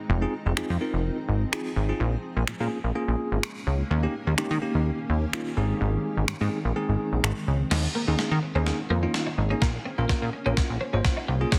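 A straight 4/4 pulse at 126 BPM drives this bittersweet dance-pop excerpt, set by an up-front gated 80s digital drum machine with a thumpy kick, finger snaps, crash cymbal and a snare soaked in gated reverb and soft clipping. Beneath it, a plucky, funky analog bass with a fast-attack filter pluck and a ring-modulated edge pumps with the sidechain, as does a bell-like tine electric piano playing clean, direct accompaniment. Further back, a granular cloud pad holds blurred, evolving chords that also breathe with the pumping. The harmony moves through Fm7, Bbm7, Eb7 and Ab before settling on Eb7sus4 at 7.7 s, where a build-up and drum fill begin and a twangy, chorused twelve-string electric guitar enters with a riff in the background. Light digital ambience surrounds the mix, and the master is dense and heavily limited.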